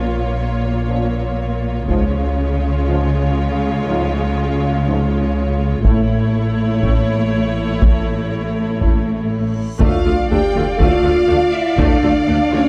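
Dramatic and heroic, this excerpt from an epic orchestral film score moves at 121 BPM in a straight 4/4, set in D harmonic minor with the tuning pitched at A4 = 445 Hz. A lush, vibrato-rich violin section carries the focused melody while a darker, more distant violin line runs beneath it, supported by smooth, even violas and sustained chords from soft-attacked French horns and a tight, very quiet trombone section. Close, focused cellos and up-front double basses anchor the bass as the harmony moves from Bbm through C# and A during the build-up. Heavy-stick taiko drums, close and dry, strike briefly at 1.9 seconds and return at 5.8 seconds, playing on until 12.3 seconds. At 9.8 seconds a huge reverse cymbal and sub drop mark the impact on Dm, where a clear, vintage-toned tuba joins the bass in the background. A moderate scoring-stage reverb gives the dark production its sense of size.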